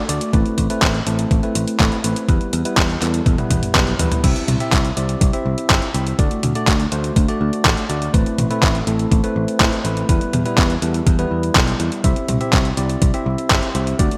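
Danceable and nostalgic, this italo disco clip pairs clean, bell-like tine electric piano stabs touched with subtle chorus and a picked electric bass against a detuned 8-bit drum machine of crash, handclaps, hi-hat and toms and a thumpy electronic kick, both drum parts overdriven and re-recorded in a large room, with a drum fill from 3.3 to 4.2 seconds leading into a C–D–Amadd9–Em progression, all set in a lush hall reverb with vinyl crackle and a bright 1980s-style digital sheen.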